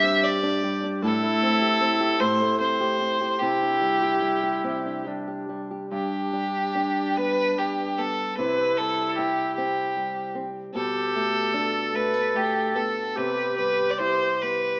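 A clear, focused fiddle with light vibrato carries a tender, nostalgic Celtic slow air in G major at 74 BPM in a rubato 3/4, up front over an airy, bright wooden baroque flute on a second line and a thumb-plucked acoustic flamenco guitar, all bathed in a lush 2.2-second hall reverb within a rough home-demo mix with a small-speaker sound, in this 14.8-second excerpt cut from a longer piece that moves from Gsus4 and Am7 toward a closing Cmaj7.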